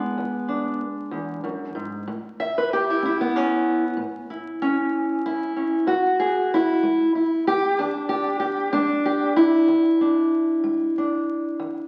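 A fingerpicked steel-string parlour guitar sits up front in this short fragment of acoustic country blues, its dark, boxy tone carrying the whole performance alone for just under 12 seconds. The mood is soulful yet rollicking, moving at a slow 63 beats per minute in a straight 12/8 pulse counted in dotted quarters. Set in E mixolydian and tuned slightly below standard pitch, the guitar ranges from E2 up to E5, moving from E7 to A at 2.1 seconds and back to E7 at 5.9 seconds. A large, wet studio reverb lends the playing a roomy tail, while the surface crackle of a very old 78 rpm record gives the sound an aged, worn character. The passage feels like a single section lifted from a longer piece.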